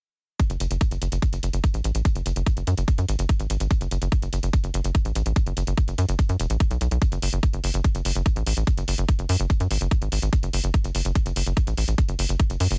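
A straight 4/4 pulse at 145 BPM drives this hypnotic, alien psychedelic trance excerpt in F# minor, where a tight, tape-warm electronic kick sits up front beside quieter metallic hi-hats re-recorded in a small room, while a punchy sawtooth-and-square sequencer bass with a fast-attack filter pluck runs from E1 to F#2 from 0.5 seconds, all in a dry mix with little reverb.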